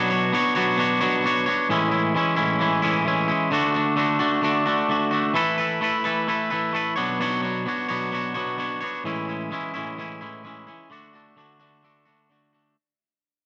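A bright, clean, twangy electric guitar sits up front, picking a carefree, jangly rock passage at 130 BPM in a straight 4/4 over chords moving from Bmadd9 through Amaj7, D and Esus4, with light reverb and a digital ambience around it, before fading out from 5.3 to 12.8 seconds in this snippet cut from a longer piece.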